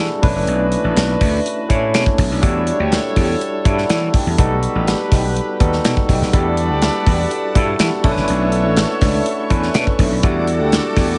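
Urban and slick, this polished 1980s jazz-funk pop excerpt moves at 123 BPM in a straight 4/4, set in B minor and cut from a longer piece. A barky tine electric piano sits up front with light overdrive, fast tremolo and lush chorus, laying down accompaniment over a gritty, growly slap bass that is bright and punchy. A modern studio drum kit drives the groove with a punchy kick, medium-tuned snare, hi-hat and bright crash cymbals, while a very quiet, twangy electric guitar through a small old amp picks a slightly broken-up riff. In the background, a horn section with vibrato carries a second line through tape echo, and at 6.3 seconds a distant string section enters with soft-attack, sul tasto sustained chords that float gently behind the band. The harmony cycles through Bm11, Em11 and B7b13, and the whole mix sits in a studio reverb with a rounded, dark-edged top.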